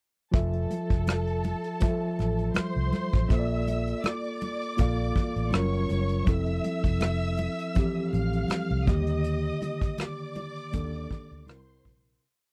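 A smooth mid-tempo soul groove at 81 BPM in 4/4, with a light 16th-note swing, comes from an up-front brush drum kit with a tight kick, rim clicks and a rolled-off top, while bright, thin-skinned congas enter at 0.7 s in the background with a slap on two and open tones on four. A dark, round, foam-muted fingered electric bass plays a melodic line with muted ghost notes, and a mellow, clean tine electric piano sits up front with spread voicings, grace notes and a half-time chord rhythm, moving through Fmaj7, Bbmaj7, Gbmaj7, Ebmaj7 and C7 in F major. A distant, lush string section adds long high lines with vibrato and portamento over this dry, close 1970s-style soul verse, which fades out from 9.2 s to 12.2 s.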